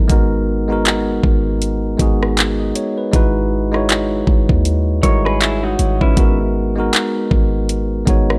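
Contemporary R&B at 79 BPM in G# minor with a sensual, late-night mood and a lightly swung 16th feel, this short cut sets a bright, bell-like tine electric piano up front over a deep, boomy 808-style bass and a smooth, knocking electronic drum kit of kick, rim click, hi-hat and handclaps, moving from G#m7 to Emaj7/G# and back, while a clean, picked electric guitar adds compressed arpeggios with spring reverb and analog delay from 5.0 to 6.4 s, set in a dry, gritty recording with digital ambience.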